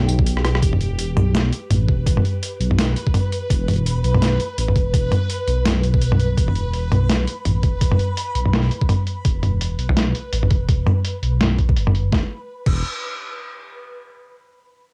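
This half-time drum and bass fragment opens on a deep, rumbling detuned saw bass and a reversed, dreamy texture with its own built-in reverb, both sounding from 0.0 s. The gritty, pitched-down sampler-style kit enters at 0.1 s with its high-tuned snare, tambourine, toms and low-passed hats, and a drum fill follows at 0.4 s. A knocking, overdriven electronic kick joins at 0.2 s and sits up front alongside the kit and the bass, driving a heavy, spacious E minor groove at 167 BPM with a swung sixteenth feel over an E5 power chord. The texture stops at 12.1 s, and the piece carries the character of a home cassette recording in a lightly reverberant room.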